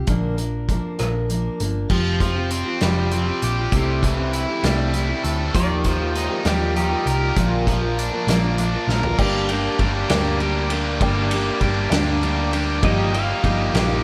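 A slow, straight 6/8 sway at 66 BPM carries this wistful, reflective slice of folk and heartland rock in G minor, as a roomy, distant drum kit with a fat snare and punchy kick joins a full-bodied dreadnought acoustic guitar and a round hollow-body bass from the start. At 1.9 seconds a bright, double-tracked overdriven guitar riff arrives up front over a piping, very quiet tonewheel organ with key click, and at 5.6 seconds a clean pedal steel played with fingerpicks drifts in through tape echo as a second line. After a drum fill, a woody, intimate upright piano with audible action noise enters at 9.2 seconds as the chords move from Bb through Fsus2 and Ebadd9 onto Gm, in a dry mix with little reverb.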